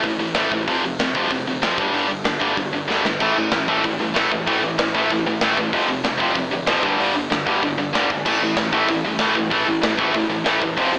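Opening at once with a bright, distorted picked guitar riff over a round, dark hollow-body bass and a punchy, polished rock kit with bright cymbals, this rowdy, rebellious punk rock clip charges along at 190 BPM through A5, F5 and G5 power chords, and after a drum fill a second distorted guitar joins in the background at 3.2 seconds, the whole mix colored by light reverb and an AM radio sound.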